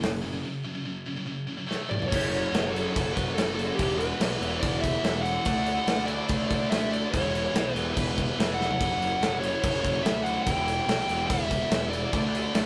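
A driving 144 BPM heavy metal groove in straight 4/4 pushes this dark, aggressive excerpt in F# minor, with two bright high-gain rhythm guitars (one scooped and very quiet) and a growly, fuzz-overdriven picked bass churning out the riff beneath an up-front acoustic kit of tight kick, medium-tuned snare, toms and bright crash and hi-hat. After a break from 0.4 seconds and a drum fill at 1.7 seconds, a dark, distorted lead guitar takes up the melody at 1.9 seconds, while a very quiet chamber string section with reedy gut-string tone and light vibrato holds sustained chords beneath it from 2.1 seconds, moving through chords such as F#5, E5, D and Em. The whole cut has the rough, lightly reverberant sound of a rehearsal room.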